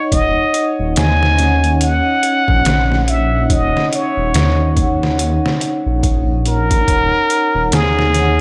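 Trip hop at 71 BPM in Eb minor, cinematic and brooding, this short piece cut from a longer track rests on a single Ebm7 chord with a swung sixteenth-note feel. A plunger-muted trumpet carries a jazz-style solo melody up front, clear with a wah-wah edge, light vibrato and tape echo, over a mellow vibraphone played with soft mallets that adds tremolo and vintage 12-bit sampler grit. Beneath them, a deep, rumbling detuned saw bass and a compressed, pitched-down, overdriven sampler-style drum kit with a thumpy kick, medium-tuned snare and hi-hat enter at 0.1 seconds, all set in a digital ambience.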